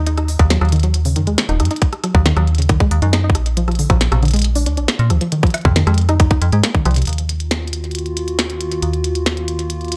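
A soft, round pluck spins gentle arpeggios with chorus and tape echo over a metallic, fast-attack FM bass at the start of this glitchy, intricate IDM passage in Eb dorian at 137 BPM, cut from a longer piece, where a tape-warm electronic kit of clicky hats, rim clicks and a tiny snare enters and is soon joined by a tight, up-front electronic kick, moving through Ebm, Bb and Fm7 until a drum fill at 6.9 seconds hands over to a warbling, nostalgic lo-fi pad of sustained chords from 7.1 seconds, all within a dark production with light reverb.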